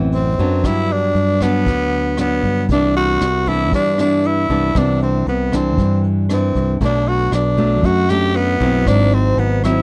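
A straight 4/4 bossa nova groove comes from a vintage brush drum kit, its tight kick, hi-hat and rim click sitting low with a rolled-off top in a pumping small room, while a classical-style, fingerpicked nylon-string guitar with fresh strings and a punchy, growly fingered electric bass carry the harmony. Up front, a raspy, gritty tenor saxophone plays a clear jazz-style solo over a melancholic, smooth progression that moves from D13 through Gmaj7 and Cmaj9 to Bm7 and G#aug7. This short passage is cut from a longer piece and sits in an intimate small-room ambience.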